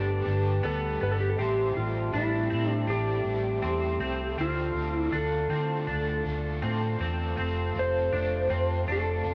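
A clean lap steel guitar carries the melody in this dreamy, blissful dream pop piece at 80 BPM in 4/4, its fingered slide lines rounded by volume swells, light compression and a digital delay. Just as prominent, a vintage muted electric bass sits up front with a round, dark, foam-muted tone, thickened by transformer saturation. Beneath them, a semi-hollow electric guitar picks bright, clean arpeggios through analog chorus and digital delay. A double-tracked overdriven electric guitar adds a shadowy accompaniment, colored by tremolo and analog chorus and placed further back. A mellow French horn section holds soft-attack sustained chords in a classical style. All five parts play together across the full 9.3 seconds, which are cut from a longer piece, moving through Gadd9, Am7, Dm and F. The whole is bathed in a moderate plate reverb and the worn, warbling pitch drift of old cassette tape.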